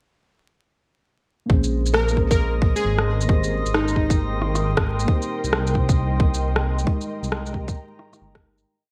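A nocturnal, rainy future garage piece at 134 BPM opens at 1.5 s with muted felt-like synth keys playing held chords with syncopated pushes over Bbm9, Abmaj9 and Cm7. Alongside them come a dark, rumbling detuned saw bass with long gliding notes and a tight, up-front, muffled two-step kick carrying 12-bit sampler grit. They are soon joined by a skittering shuffled shaker and rim click, then a punchy, catchy plucky unison lead playing short answering phrases through digital delay until 4.4 s. An ethereal airy pad pumps under the sidechain, and a glassy, drifting harmonics texture holds one high note. All of it sits in bright 1980s-style digital production with vinyl crackle before fading out from 6.3 s.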